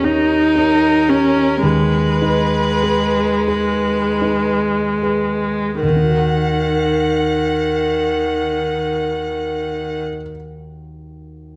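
Up front and close, a single bowed viola carries a rich, smooth, vibrato-laden accompaniment beneath a distant, even violin melody and an intimate concert grand with deep bass and audible action noise in this melancholic, elegiac slow romantic piano quintet movement in Eb minor, a rubato 6/8 at 23-39 BPM that slows through its first 5.8 seconds, with the strings stopping at 10.0 seconds and the piano ringing on to 11.6 seconds in a moderate recital-hall reverb.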